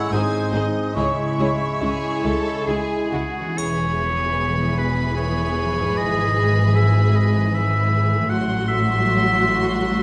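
A clear, up-front oboe carries a second line through this melancholic, elegiac fragment of a slow romantic orchestral movement in 3/4 at 63-79 BPM, moving with rubato from C# minor into E major at 3.6 s. Over the mellow, ringing arpeggios of a concert harp, a focused violin section sings the melody high above a lush second violin line, with violas, cellos and double basses bowing with vibrato beneath. An airy, distant flute ensemble, a bright, vintage clarinet, a warm bassoon and a French horn section sustaining chords in the background all drop out by 3.2 s, then a close, dry triangle sounds briefly from 3.6 s, all set in a wet concert hall reverb.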